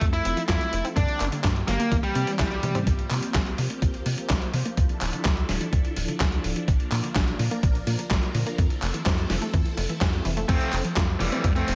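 Sunny and playful, this italo disco cut from a longer piece rides a straight 4/4 pulse. An up-front, high-gain electric lead guitar carries the melody with a distorted, picked tone wrapped in digital delay and shimmer reverb, drops out at 2.7 seconds, and returns at 10.5 seconds. Beneath it, a swirling, vintage string machine holds bright sustained chords through ensemble chorus and a phaser, while a lush, detuned unison pluck spins arpeggios in the background, and a filter sweep colours those arpeggios from 2.9 seconds. A tight, punchy sequencer bass drives the low end with a mellow, decaying sawtooth-and-square tone. A thumpy electronic kick and a gritty, dusty soul sampler-style kit with a medium-tuned snare, handclaps, hi-hat, toms, crash cymbal and gated reverb keep the groove, and a drum fill leads into the middle passage, all set in a light reverb.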